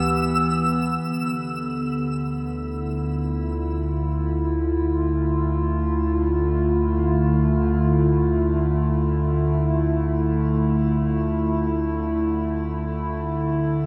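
A warbly, detuned tape-like pad sustains Em/D chords over a deep, round sub bass on D2 while a twinkling granular texture sparkles high above for the first 1.0 s and then falls away, leaving the pad and bass to settle on Dmadd9 in this melancholic, spacious free-time ambient excerpt in D dorian, cut from a longer piece and steeped in cathedral reverb with shimmer trailing the pad.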